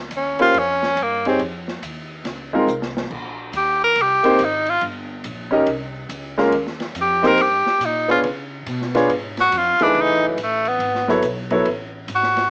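A swinging 4/4 pulse at 140 BPM drives this short, searching and spiritual modal jazz excerpt, where a bright, up-front tenor saxophone solos with vibrato over clear grand piano chords moving from Bbm69 through Cm7 and Db7 to F#m11, while a woody pizzicato upright bass and a dark, smooth jazz kit with boomy kick and a drum fill at 2.7 seconds sit further back, the saxophone and piano colored by cassette tape in a small-room home recording with a small-speaker sound.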